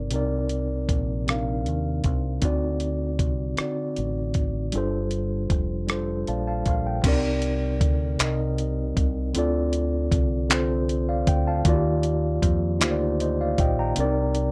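A dry, dark production frames this sultry, yearning slow R&B passage, cut from a longer piece, in 6/8 at 52 BPM in C dorian, tuned slightly below standard pitch to A4 = 436 Hz. A mellow tine electric piano carries the accompaniment with a clean tone heard through its built-in speakers, moving through chords such as Cm9, D7b9 and G7sus4 before playing a fill from 5.9 to 7.0 seconds. Underneath, a deep dub fingered electric bass sits low and round, its direct, amped sound placed up front. A gritty, compressed sampler-style soul drum kit enters at 0.1 seconds with a thumpy kick, rim clicks, handclaps, hi-hat and crash cymbal, and stands as the loudest part of the mix. At 7.0 seconds the harmony shifts through Cm9, Dm7 and Ebmaj9, giving the second half a yearning lift that carries through to the end of the passage.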